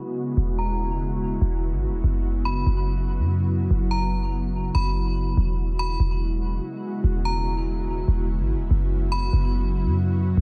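Echo-heavy and dry, this floating, blissful excerpt of atmospheric cloud-rap hip hop in a half-time feel sets an ethereal, airy pad of detuned chorused chords over E69 and F#7sus4 from the start, a filter sweep through the first 5.4 seconds, a deep, boomy clean 808-style bass entering at 0.4 seconds, and a bright, inharmonic metallic FM bell melody with tremolo and dub echo ringing high above from 0.6 seconds.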